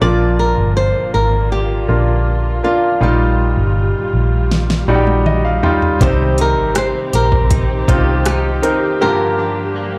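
A tender, emotional pop ballad at 80 BPM opens with a fingerpicked flamenco guitar carrying the melody over a clear, polished grand piano with deep bass, both touched by slapback echo, while lush, bowed sul tasto strings hold sustained chords and a dark, round, foam-muted electric bass sits up front; a smooth R&B kit with soft kick and fat snare enters at 4.5 seconds alongside a drum fill and a piano fill, and a compressed, clean electric guitar adds background arpeggios with analog chorus from 6.0 seconds, all moving through Bb, Ebadd9, Cm and Gm7 and heard through a club PA with light reverb.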